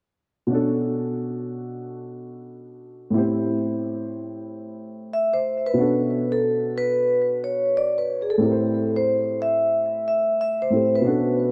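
Cool and smoky, this hip hop excerpt at 91 BPM with a swung 16th feel in B phrygian opens with a dark, deep-bassed concert grand piano voicing Bm9 and Am7 chords from 0.5 seconds, joined at 5.1 seconds by a ringing, metallic vibraphone melody played with soft mallets, its slow motor vibrato and analog delay drifting through a dreamy hall reverb.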